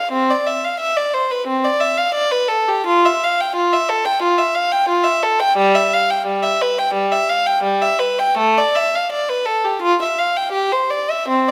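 Rubato phrasing in 4/4 shapes this solemn, introspective baroque-style suite movement, a short passage from a longer piece, where a single bowed violin with a rich, reedy gut-string tone in period style plays alone from 0.0 to 11.5 s, close and up front within a moderate recital hall reverb.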